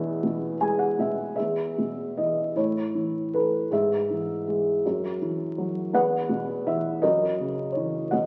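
A felt-muted upright piano opens this calm, peaceful fragment of a lyrical classical solo. Its soft, mellow, boxy tone sits up front and intimate, the instrument's action noise clearly audible, with a brief felt fill from 0.2 to 1.4 seconds. In a rubato 6/8 at about 50-55 dotted-quarter beats per minute, tuned to A4 = 437 Hz, the E major music spans E2 to G#5 and moves from E through A, E/G#, Esus2/F# and E5 to F#7 before the cut at 8.3 seconds, the dark piano set in a wet recital-hall reverb beneath the crackle of a very old 78 rpm record.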